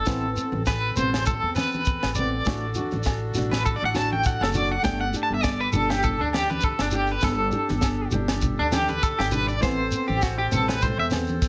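A tight, dry funk kit with a high-tuned snare drives a lightly swung 100 BPM groove in 4/4, joined by grainy shekere, ringing congas in the background and very quiet agogo bells to give this sunny, joyful highlife guitar band cut its bounce in G major. Up front, a twangy, slightly broken-up electric guitar plays picked arpeggios with tremolo and slapback echo, while a thumb-plucked flamenco guitar accompanies and a woody, dark pizzicato upright bass anchors the low end. A reedy accordion holds smooth sustained chords underneath, moving through Amadd9, D/A and Gsus2 in a small, lightly reverberant room over this 11.5-second excerpt.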